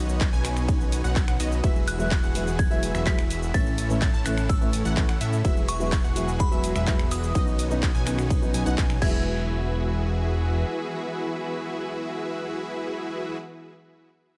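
A punchy, overdriven electronic kick drives this uplifting, euphoric festival progressive house excerpt in E major at 126 BPM. Alongside it plays an overdriven big-room kit of crash, ride, hi-hat, shaker, handclaps and finger snaps, and both fall away at 9.1 s as the drop gives way to the next section. Beneath them a fat, saturated analog bass pumps with sidechain while a huge, detuned supersaw riff with delay rides over a lush, phased pluck arpeggio and soft, bowed strings in the background. A dark, mellow grand piano enters on accompaniment at 1.6 s, and a glassy FM bell melody with chorus and delay sparkles on top from 1.9 s, all set in light reverb.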